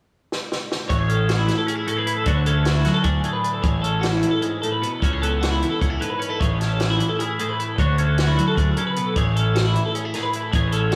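A brief fill on a compact cocktail kit, with a high-tuned snare and tight kick, opens this wistful, bright math rock and midwest emo piece in 7/8, cut from a longer work. At 0.9 seconds two twangy, compressed twelve-string electric guitars come in: one picks a phased accompaniment and the other picks bright, chorus-laden arpeggios up high, over a growly, fuzz-overdriven fingered bass. The parts circle Amaj7, Dmaj7 and C#m7 in a dreamy mix soaked in hall reverb.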